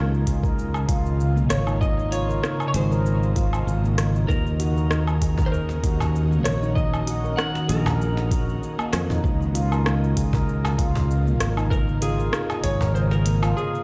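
Heard through a big sound system in a bare room with a large studio reverb, this earthy, mystical organic downtempo excerpt moves at 97 BPM with a light sixteenth-note swing over Dbmaj9 and Ebm7 chords: a ringing, meditative stainless-steel handpan plays tape-echoed arpeggios with sharp finger strokes; a growly, up-front fretless electric bass pumps beneath an ethereal, warbling vintage pad that sits in the background; an overdriven electronic kit of smooth hats, rim click, shaker and woodblock rides with a soft kick that drops out at 12.9 seconds; a slightly broken-up, fingerpicked slide guitar enters at 1.5 seconds with an echoing melody; and a snappy, saturated cajon joins at 5.4 seconds.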